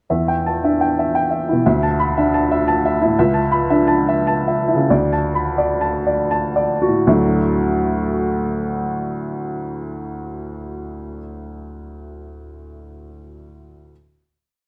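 A woody, up-front upright piano plays this short, hopeful and peaceful neoclassical minimalist piece alone in a rubato 3/4 in D major, its rippling figuration and a second figure moving through Em, Dsus2 and A/C# at roughly 76 to 118 BPM before slowing from 2.4 seconds into a held D chord at 7.1 seconds, all in light reverb with audible lossy compression artefacts.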